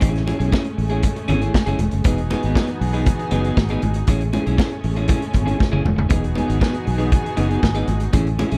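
A straight 4/4 disco groove at 118 BPM in E major drives this danceable, glamorous short clip, as a vintage drum kit with a punchy kick, medium-tuned snare and pumping room sits up front beside a dark, round, foam-muted fingered bass, while a slightly broken-up, compressed electric guitar with vibrato picks an accompaniment and a smooth, bowed studio string section holds sustained chords alternating between Amaj7 and Emaj7, high-tuned congas ring with hard hands in the background, and a drum fill arrives at 5.6 seconds, all within small room ambience.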